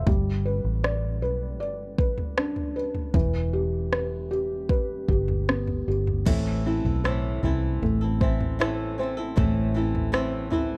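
A deep house drum kit sits up front in this longing, heartbroken pop ballad, its electronic, layered sound built on a deep kick with crash cymbal, rim click and toms. Alongside it, a felt-muted upright piano, also up front, plays soft, mellow accompaniment, intimate and close, with audible action noise and a short sustain. A vintage fingered electric bass, foam-muted and amped, gives a dark, round and punchy low end that also sits near the front. The harmony moves from G to Em around 3.1 seconds and arrives on Am at 6.3 seconds, where a fingerpicked flamenco guitar enters with acoustic arpeggios that add a warm glow to the closing stretch. The sound is dry and close, like a 1970s studio recording, and the clip is cut from a longer piece.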